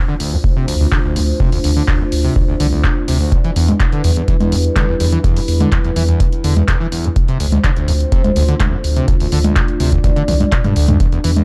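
A squelchy, gritty overdriven acid bass riff with resonant filter sweeps, lush chorus and delay drives this raw, trippy acid house excerpt at 125 BPM, set over a deep saturated sine sub bass and a large-room electronic kick, tape-toned analog drum machine congas, handclaps, hi-hat and toms with a drum fill at 10.3 seconds, and a moody, sidechain-pumped analog pad with chorus and phaser holding Dm7 and Em7 chords in a dark production.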